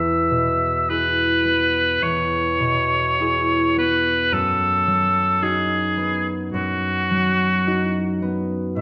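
Romantic classical music for oboe and harp, lyrical and tender at a slow, rubato 50-56 BPM in 4/4, in which a clear, vintage-toned oboe with light vibrato and a soft attack sings the melody over the fingerpicked, ringing chords of a concert harp, both up front in a reverberant recital hall as the harmony moves from E to B7/F# at 4.3 seconds in this brief fragment of a longer piece.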